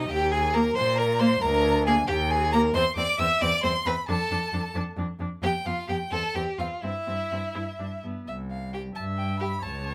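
A quick classical-period string quartet movement in 6/8 with a rubato feel, spirited and cheerful, cut from a longer piece. Two bowed violins sit up front with a rich, focused vibrato tone, the first carrying the melody and the second a supporting line, while the similarly voiced cello holds the bass up front and a clear viola joins with accompaniment at 0.5 s. Light reverb surrounds the players, and the harmony moves through G7 to C at 6.1 s before a new section begins at 8.3 s.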